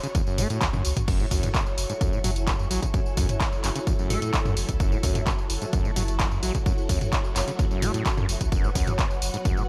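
A raw, trippy acid house excerpt in F# minor at 129 BPM opens with a squelchy, gritty acid bass riff carrying tape echo, a punchy analog drum machine of hi-hat, handclaps, tambourine, toms and crash with a drum fill at 0.6 s, and an ethereal, airy phased pad, as an up-front electronic kick, a deep sine sub bass pumping underneath, lush vintage string-machine chords from 1.1 s and a brief catchy square-wave unison lead with analog delay at 4.1 s fill out a sustained F#m7 groove in a light reverb.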